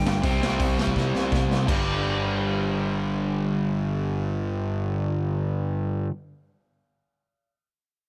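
Punk rock excerpt with an upbeat, rowdy energy, built on a dark, double-tracked overdriven guitar riff up front and a punchy fuzz bass, while a raw garage drum kit with a boomy kick, dark cymbals and a gritty, saturated small-room sound plays a fill from 1.0 to 1.7 seconds before dropping out at 1.8 seconds, and a lightly driven, slightly broken-up lead guitar sits in the background for only the opening 0.7 seconds as the chords move from C5 to G5.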